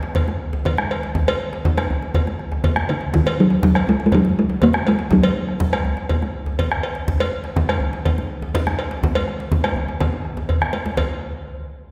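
A round, up-front bombo and a deep, soft-handed djembe set off this driving, festive West African drum ensemble at 122 BPM in a straight 4/4, joined almost at once by ringing, close congas and a metallic, saturated cowbell, with the pace gradually speeding up. From 2.9 to 5.6 s a short-ringing talking drum carries the melody up front, and a drum fill at 10.4 s closes this fragment of a longer piece. A lush concert-hall reverb gives the whole ensemble a spacious, churchlike bloom.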